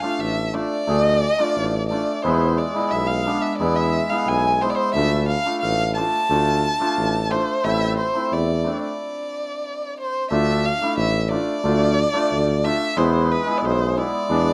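Klezmer in 2/4 at 89 BPM and D dorian sharp4, this festive, soulful fragment of a longer piece speeds up throughout, pausing in a stop from 9.0 to 10.3 seconds before the opening phrase returns. An expressive, dark-toned violin played by a single bowed player sits up front with vibrato, portamento and a slapback echo, over a shimmering, ringing hammered dulcimer accompaniment and a warm, jazz-style solo tuba bass with light vibrato and scooped notes that sounds distant and roomy yet prominent. The sound is a dry, close 1970s-style studio recording with light reverb.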